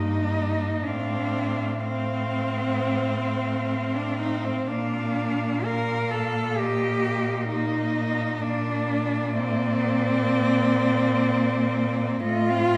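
A wet scoring-stage reverb with a decay of 1.7 seconds surrounds this tender, lyrical classical passage for a cello ensemble, cut from a longer piece in Bb major. It moves at a slow 63 BPM in 4/4, its beats pulled unevenly with rubato. Four bowed cellos, each a single player with vibrato, play together throughout: a rich, smooth and even voice carries the melody high in its range from a distant position, set softer than the others. Beneath it, a second rich cello sits up front with an expressive second line full of portamento, and a clear, focused cello holds a compact accompaniment. A warm cello anchors the bass, also expressive and gliding with portamento. The harmony drifts from Eb/G through F/A to settle on Bb at 4.7 seconds, then turns to F7/A at 12.2 seconds, leaving the phrase open.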